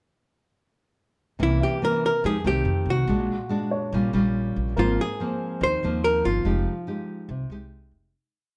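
Intimate and melancholic, this brief bossa nova piece in F minor moves at 142 BPM in a straight 4/4. The guitars and bass enter together at 1.4 seconds, with the piano joining at 1.6. Up front, a clean, compressed hollow-body archtop guitar, picked and amplified with a dark tone, carries a motif-based melody in sentence-like phrases. Beside it, a fingerpicked classical nylon-string guitar plays thumb bass under syncopated plucked chords, with finger squeak audible. A woody, thumpy upright bass on gut strings outlines dotted root-and-fifth figures, while a baby grand piano sits in the background with scattered, short-sustained notes and audible action noise. Harmonies pass through chords such as Bb7alt and Ab69, and a moderate studio reverb wraps the warm, dusky production before the fade-out that begins at 6.5 seconds.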